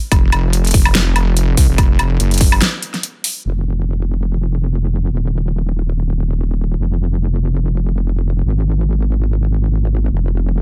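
A half-time 4/4 groove at 144 BPM with a 55% swing on the 16ths drives this chaotic, heavy wobble dubstep drop in F phrygian, cut from a longer piece. A punchy, overdriven electronic kick and an up-front, overdriven big-room dance kit with a huge snare, metallic hats and woodblock slam together until the kick drops out at 2.5 s and the kit at 3.3 s, leaving a brief break. The sustained, compressed wobble bass, a detuned sawtooth-and-sine blend with chorus and overdrive, sits low and up front, carrying on alone in a digital ambience until 10.6 s.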